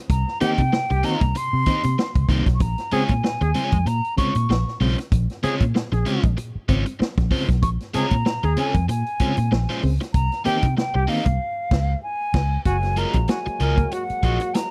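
Funky and driving, this short cut from a longer piece sits at 96 BPM in Bb minor with a light swing on the sixteenths. A hollow, close-miked concert flute carries the melody with vibrato and tongued notes, while a brilliant trombone adds a second line beneath it from 0.4 seconds. A vintage drum kit with a punchy kick, medium-tuned snare, hi-hat and crash sits up front alongside a dark, round, foam-muted fingered electric bass, and a crunchy overdriven guitar picks out accompaniment. A reedy electric piano plays stabs through its built-in speakers with a fast tremolo until 11.3 seconds, just before a band accent and break land on a Db chord at 11.4 seconds. At 12.7 seconds the harmony opens onto Gbmaj9 as a percussive tonewheel organ enters in the background with key click and a slow rotary speaker, all captured in a dry, close 1970s-style small-room sound.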